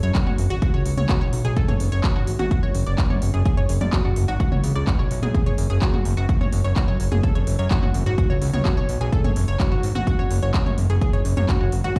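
A straight 4/4 pulse at 127 BPM drives this short cut from a longer melodic techno piece in F# minor, with a heavy, overdriven electronic kick sitting up front from 0.1 seconds onward. Around it, a layered techno kit adds handclaps, smooth hi-hats and toms, the hats and toms pumping against the sidechain and roughened by overdrive. Underneath, a fat, detuned sawtooth-and-square bass rides the same pumping, its saturated tone thick and sustained after a quick filtered pluck. Above, a round, bright analog pluck spins arpeggios with a noise layer, chorus and tape echo, lending a cinematic, dramatic sweep. The harmony moves from F#5 through F#sus24 and back to F#5 before settling on C#5/F# at 10.1 seconds, all set in the large reverb of a big sound system in a bare room.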